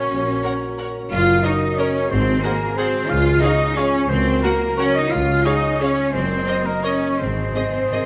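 This festive, sweeping orchestral ballroom waltz excerpt in Db major opens at 178 BPM in a flexible, rubato 3/4, with a clear cello section up front carrying the bass alongside a bright double bass section, tight French horn chords, ringing thumb-plucked harp arpeggios and a hollow, soft-edged concert flute, bright oboe and mellow clarinet sharing a second line. Just after, a rich, close viola section adds accompaniment while a smooth violin section sits in the background with the melody and a distant, very quiet second violin section traces another line, the harmony moving from F#/A# through Ab7 and Gb/Db before settling on Ab. Hard-mallet timpani, articulate and close yet in the background, enter at 2.1 seconds and return for a fill at 7.2 seconds, all bathed in the generous reverb of a recital hall.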